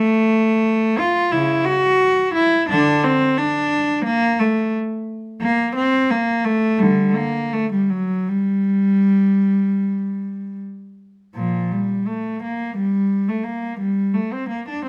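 A classical, baroque-style suite movement for unaccompanied cello in G minor, this dance-like, radiant 4/4 excerpt moves at a flexible, rubato 76-89 BPM, with a single bowed cello in period style, its reedy gut-string tone heard close and up front in a light reverb, tuned to A4 = 442 Hz and ranging from Bb2 to F#4 across its 14.9 seconds.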